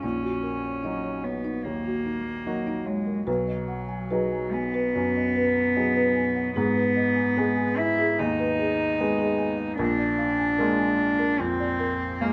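The rhythm moves in a rubato 4/4 at 74 BPM, giving this neoclassical piano and strings piece in G# minor a fragile, reflective feel. A bowed cello sits up front as the second line, played sul tasto by one player with a soft attack, its pure, floating tone carrying a smooth top. The grand piano shares the foreground as accompaniment, with a vintage, warm and smooth character across its low-to-middle range. Further back, a folk marimba played with soft mallets on hardwood bars adds arpeggios in a woody, dry, rustic voice that stays mellow and round. The harmony moves through D#m7/A#, B6, G#m and A#7, all three parts sounding from 0.0 to 12.3 seconds. Captured live in one room with moderate studio ambience, the passage is cut from a longer piece.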